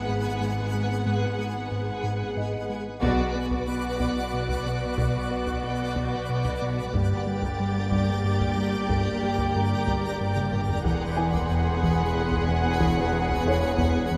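In a straight 3/4 pulse, this uneasy, ominous suspense film cue, cut from a longer piece, opens on a fat, saturated analog bass riff beneath bowed strings (a vibrato-laden violin melody over background violas, cellos and double basses), a twinkling granular texture holding sustained chords in its own reverb, and a very quiet, felt-muted upright piano with audible action noise. At 3.0 s a band accent brings in a focused second violin line, a high violin texture and background taiko drums struck with hard sticks, with a drum fill at 10.4 s. The chords move from G#m7 through Bm and Gm to Eadd9, all set in a moderate concert hall reverb.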